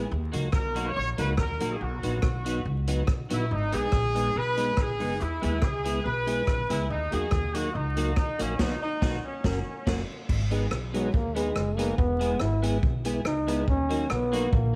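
A clear horn section carries the melody over this driving, energetic ska passage in G# minor at 142 BPM, tuned to A4 = 435 Hz, through a band accent at 8.6 seconds, after which a mellow, smooth-topped trombone takes a solo from 10.9 seconds. Underneath, a woody, growly pizzicato upright bass and a swinging big-band drum kit with a punchy kick sit up front, while a bright, twangy clean electric guitar with analog chorus plays accompaniment and a soft, flute-like percussive tonewheel organ adds stabs through chorus vibrato and a slow rotary speaker. A moderate plate reverb, small room ambience and vinyl crackle colour this cut from a longer piece.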